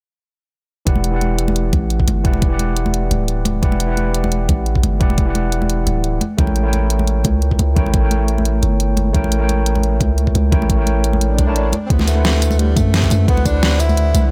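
A long, sustained 808-style bass sits up front in this soulful, rolling liquid drum and bass excerpt at 174 BPM in E minor, its deep, sine-like tone striking with a fast attack before decaying. Above it, an overdriven tine electric piano plays gritty accompaniment through a combo amp, dressed in lush chorus and delay as the chords move from Em9 to A7b9 at 6.2 seconds and on to D13. The drums are layered and produced, with a knocking electronic kick and a pop kit of hi-hat, deep snare and tambourine, both overdriven and re-recorded in a small room, while close, dry congas played with hard hands sit in the background with a gentle 16th-note swing. An electronic swell rises at 11.3 seconds into a brief break, and at 11.9 seconds a breathy tenor saxophone enters as a solo voice, whispered and intimate with jazz-style vibrato, a soft attack and a touch of delay. The mix is dry and close, with little reverb around the parts.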